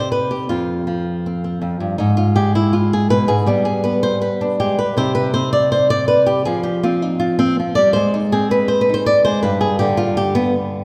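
A straight 4/4 pulse at 161 BPM drives this mournful, intense flamenco piece in G phrygian dominant, where a lone acoustic flamenco guitar, dark-toned, fingerpicked and up front, carries the melody from F2 to D5 over chords moving from Cm through Abm6 and Fsus2 to a closing G5, all bathed in the lingering, wet reverb of a church or concert hall for the full 10.8 seconds of this fragment cut from a longer work.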